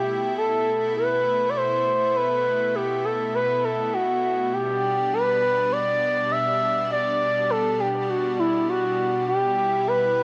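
A straight 4/4 pulse at 101 BPM carries this moody, nocturnal synthwave excerpt, where a smooth, up-front sawtooth-and-triangle lead with vibrato and portamento sings its melody within the range of E4 to E5 through chorus, cassette tape and tape echo over a lush, detuned unison pad of slow-attack sustained chords moving from Asus2 to G at 4.5 seconds and Em at 9.3 seconds, all in a home cassette recording with moderate spring reverb and tuning at A4 = 441 Hz.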